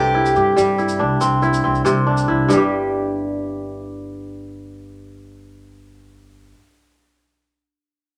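A moderate studio ambience frames this short cut from a longer West African traditional piece, with the kora placed up front and the shaker heard close and dry. The mood is joyful and hypnotic, moving in a straight 12/8 lilt. The kora carries the piece with fingerpicked arpeggios that sound crisp and ringing, covering a span from G2 to B4 across the whole passage, while a pizzicato upright bass with steel strings supplies a woody low line beneath it. A full-bodied dreadnought steel-string acoustic guitar picks a brief melody in the opening 2.0 seconds, and a grainy, bright tube shaker adds light percussion early on before dropping away. At 2.5 seconds the music moves into a new section as the harmony shifts from C to G5, with the kora and bass continuing together to the end.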